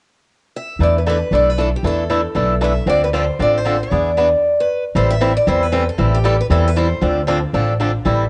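A picked steel-string acoustic guitar opens the melody at 0.6 seconds, its bright, parlour-sized tone fresh-stringed and boxy, before a swing-style acoustic guitar and a woody, thumpy upright bass join at 0.8 seconds in this brisk, bittersweet jazz manouche cut from a longer piece, swinging at 232 BPM in A minor. The up-front accompaniment guitar carries a cassette-tape colour while the dark pizzicato bass sits forward beneath it, and a stop at 4.4 seconds breaks the flow before the second section moves from Am7 to Dm7. Moderate spring reverb and a small-room ambience surround the trio, and the home cassette recording keeps the top end dulled.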